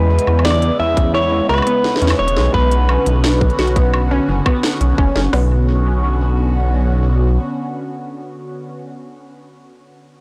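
A dark, detuned sawtooth bass rumbles up front through this eerie, melancholic IDM fragment in 4/4, its deep, beating tone anchoring the low end. Above it, a clean, compressed electric guitar carries a short picked melody with delay until 4.6 seconds, while a dusty pluck spins lo-fi, warbling arpeggios through chorus, cassette tape coloring and delay, its filter sweeping as each mellow note decays. A swirling, nasal analog pad holds sustained chords under phaser and chorus, outlasting the other parts to 8.9 seconds. Two overdriven electronic drum kits, re-recorded in a small room, supply a tight kick, woody snare, crisp hats and woodblock, one kit sitting up front and the other carrying delay. The recording sounds blown-out and overdriven, and the music shifts from an opening section into a second one at 5.3 seconds, cut from a longer piece.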